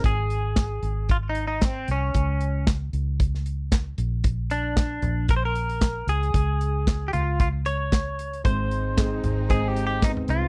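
Piano-driven pop excerpt at 114 BPM with a light swing, bittersweet and dramatic, where a bright, twangy clean electric guitar with slapback echo carries the melody over a dark, round, foam-muted fingered bass and an up-front country drum kit with handclaps, hi-hat, kick, snare and toms, while a woody upright piano with audible action noise and a very quiet, lush bowed string section touch in briefly at the opening and return around 8.4 seconds as the chords move from Bb to Db5 to Ab in a dry, close 1970s-style studio sound.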